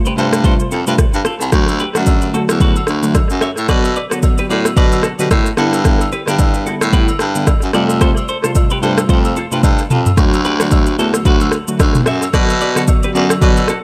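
Romantic and sunny, this afrobeats groove swings gently, with a breathy, raspy baritone saxophone carrying the bass line up front alongside an electronic afro-pop drum kit of deep kick, rim click, shaker and toms, both kit and clean, twangy electric guitar riff trailing dub echo. Glassy, detuned digital keys with chorus and a filter sweep fill in the harmony, while agogo bells and woodblock join in the background at 1.7 seconds. A drum fill at 9.6 seconds leads into a new section at 10.2 seconds, all set in an echo-heavy mix with light reverb and digital ambience in this brief cut from a longer piece.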